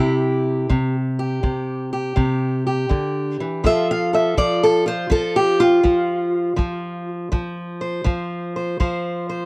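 Swung eighths in 4/4 carry this laid-back, rollicking acoustic country blues fragment, where a bright, boxy parlour steel-string guitar sits up front, fingerpicked with audible finger squeak as it carries the melody from the start and moves from C to F at 3.6 seconds, while a tight, brushed acoustic kick drum joins at 0.7 seconds, the recording dry and close in the manner of a 1970s studio.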